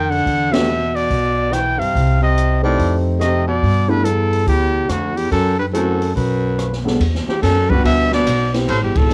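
A home cassette recording with a soft tape grain and a moderate room reverb frames this short, sophisticated slice of small-group swing and bop, cut from a longer piece. The trumpet carries the melody up front with a light vibrato and a mellow tone, while a clear, present baritone saxophone shapes a low second line with its own vibrato and soft attack. Underneath, a woody pizzicato upright bass on steel strings moves through the harmony, and an acoustic kit with dark cymbals, a medium-tuned snare and a boomy kick adds hi-hat, ride, rim click and snare from a small, natural-sounding room. A grand piano enters at 0.5 seconds with a natural, warm accompaniment, landing together with a band accent that returns at 8.9 seconds. The swung harmony moves through a minor seventh, a minor triad, a ninth chord and a half-diminished turn before opening onto a rich minor ninth as a new section begins at 7.0 seconds.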